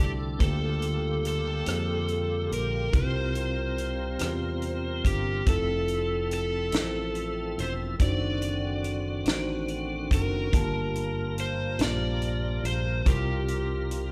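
Slow gospel in 6/8 at 47 BPM, hopeful and reverent, where an overdriven slide guitar played with fingerpicks carries the melody up front over a mellow tine electric piano, a full tonewheel organ holding sustained chords through a fast rotary speaker with chorus vibrato and key click, and a growly, punchy fingered electric bass, joined at 0.4 seconds by a tight funk drum kit with a high-tuned snare, the group heard in a moderate church or concert hall reverb as the chords move from Gm9/D through C7sus4 and Fmaj7 to D7b9/F#.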